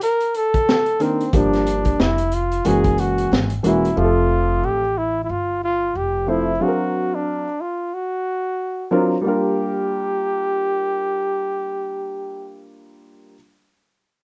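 Jazz-hop instrumental with a smoky, mellow mood, set at a relaxed 91 BPM in 4/4 with a 16th-note swing and a G dorian flavour. A breathy flugelhorn carries the solo melody from the very start, played in a jazz style with light vibrato, soft attacks and scooped notes, and it sits present and up front. Alongside it, a crunchy breakbeat drum kit brings a gritty, saturated, small-room sound, with a punchy kick, a high-tuned snare, hi-hat and a rolled-off top, before it drops out at 4.0 seconds. A dark, vintage-toned baby grand piano comes in at 1.0 second as accompaniment, and a woody pizzicato upright bass holds the low end until it stops at 6.6 seconds. The harmony drifts through jazzy chords such as Cm9, F#9 and D7alt, and the whole thing has the loose, lightly reverberant feel of a rough home demo cut from a longer piece.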